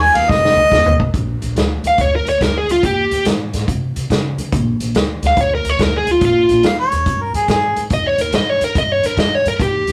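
Electric blues shuffle at 142 BPM in Bb mixolydian, rollicking and gritty, with a swung 4/4 feel moving through Bb, Eb7 and Bb7. A soft-attack harmonica with light vibrato and scooped, jazz-style notes opens with a brief solo over a drum fill from a vintage kit with a punchy kick and dark cymbals; a woody, thumpy pizzicato upright bass runs underneath, and the harmonica returns at 6.7 seconds. A smooth, overdriven lead guitar with a dark, picked tone carries the melody up front from 1.9 seconds, all captured in a rough rehearsal-room recording with moderate studio reverb in this excerpt from a longer piece.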